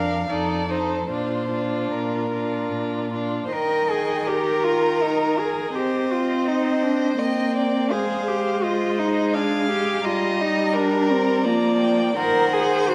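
This classical excerpt is a slow, romantic movement for string quartet, serene and warm, moving in a rubato 3/4 at 73-86 BPM. The melody belongs to a rich, expressive first violin, which sits more distant in the hall and adds portamento. A clear, focused second violin carries a second line, while the viola plays accompaniment from close up front and the smooth, even cello holds the bass. All four players bow with vibrato. The music begins in Bb major, resolving from F7 to Bb at 1.1 s, then moves into Eb major at 3.5 s and passes through Cm, Ab and Eb/G before closing on Cdim/Eb at 12.2 s. A moderate concert hall reverb surrounds the ensemble.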